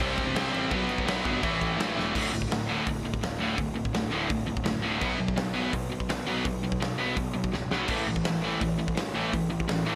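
Punk rock at 167 BPM in D major, rebellious and energetic, cut from a longer piece, with a biting overdriven guitar up front and a bright, cranked stack guitar behind it both driving riffs over a chord run of C, B5 and A5 before settling on D5 at 2.1 seconds. A growly fuzz bass sits in the background, while a big rock drum kit with a fat snare, punchy kick, rolled-off top and a big-room sound sits up front and drops in fills at 2.0 and 7.5 seconds. Light reverb rounds out the mix.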